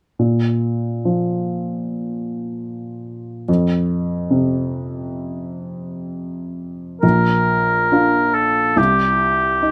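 A moderate studio room gives this brief cut from a longer romantic classical duo a natural ambience, with the grand piano sitting up front. In Bb major at a rubato 59-76 BPM in 4/4, the tender, lyrical piano carries the accompaniment alone from 0.2 seconds, ranging from Bb1 to F4. At 7.0 seconds a warm, roomy oboe enters with a solo melody between G4 and Bb4, sounding distant yet standing above the piano until the close at 9.7 seconds.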